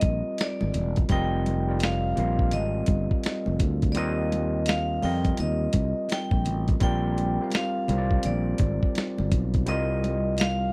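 Sensual and warm, this short neo-soul R&B cut from a longer piece swings gently in 4/4, moving from Cm9 through F9sus4, Ebadd9 and Bb69 before settling on Cm7 at 9.7 seconds. A metallic, ringing vibraphone struck with hard mallets carries the melody with a slow motor vibrato and slapback echo, over a barky, overdriven tine electric piano heard through a combo amp. Up front sit a growly, punchy fretless bass and a compressed, gritty sampler-style kit with a thumpy kick and medium-tuned snare, while very quiet, thin-skinned congas add a damped, vintage touch, all captured in a dry, close 1970s-style studio sound.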